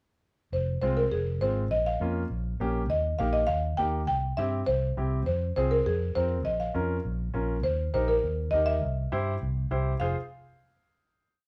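Cumbia in a fiery, danceable vein, this short complete piece has a buzzing marimba played with soft mallets carrying a motif-based melody in period phrases, its woody, boxy tone sitting up front from 0.5 seconds. A dark, punchy fingered electric bass drives a cumbia bass figure beneath it, while an intimate upright piano with audible action noise adds rhythmic triad chords from 0.8 seconds. The band plays live in one room with light reverb, cycling through a minor-key progression before landing on a final chord at 10.0 seconds.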